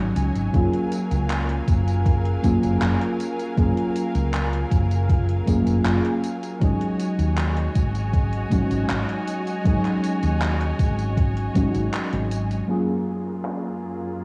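Nostalgic and faded, this vaporwave excerpt drifts at 79 BPM in a straight 4/4, settling in Gb major over slow alternating Ab7sus4 and Gbmaj9 chords. A soft, full-bodied FM electric piano sits up front carrying the accompaniment, its fast-attack, decaying tones coated in phaser, lush chorus and analog delay. Beneath it, a woody, hollow-body fretless bass plays dark and punchy with a subtle chorus, while a bright bowed string section holds sustained chords with vibrato, close-miked yet quiet in the mix and dulled by a low-pass filter. A thumpy, overdriven electronic kick and a gated 80s drum machine of crash, handclaps, hi-hat and tambourine, soaked in gated reverb and softened by filtering, sound re-recorded in a small room. The kick drops out at 11.7 seconds, and from 12.7 seconds a filter sweep on the drums colours the closing moments, all under a hazy cassette-tape sheen and light digital ambience.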